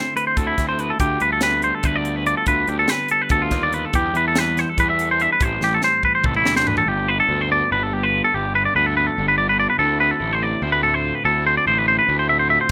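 Through a rough home-demo mix with light reverb, this restless, wistful math rock and midwest emo excerpt in 7/8 sets a bright, twangy electric guitar up front, spinning plate-reverbed arpeggios over a dark, clean guitar tucked in the background with subtle chorus, while a growly, fuzz-overdriven picked bass and a crisp, airy fusion kit with a high-tuned snare and punchy kick drive the chords from Dsus2 to Am7 until a drum fill from 5.6 seconds hands off at 6.9 seconds to a drumless passage of G9 and Dm9, the kit returning only at 12.7 seconds.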